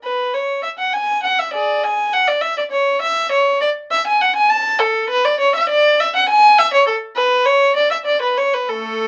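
Radiant and serene, this brief passage cut from a longer baroque-style suite movement for unaccompanied violin unfolds in A major at 101 BPM in a rubato 3/4, with a single bowed violin of dark, nasal, reedy gut-string tone in period style spanning A3 to A5 and sitting up front yet distant in light reverb, tuned to A4 = 443 Hz.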